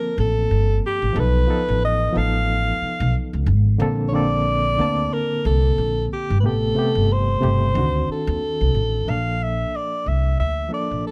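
Swung sixteenths in 4/4 give this lush 1970s-style soul fragment a smooth, cinematic glide, with a plucked, woody upright bass sitting up front from 0.2 s. A breathy, clear alto saxophone carries the melody with pop-style vibrato, while a barky, reedy electric piano, lightly overdriven and pulsing with fast tremolo through its built-in speakers, accompanies over chords such as Gm11, Bbmaj9 and D7b9. A small room ambience surrounds the trio, and the harmony moves to a new section on Bbmaj7 at 9.1 s.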